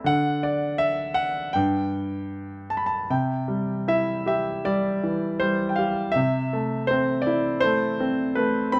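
Close, detailed microphones and light reverb frame a clear, polished concert grand piano, heard up front with a deep bass and short sustain. This brief, peaceful fragment of a lyrical classical solo moves at a calm 77-83 BPM in 4/4 with rubato, opening on unharmonised material before settling into C major at 3.1 s. The piano ranges from G2 to B5, resting on a C chord and then shifting to Am/C at 6.2 s before the piece is cut off at 8.8 s.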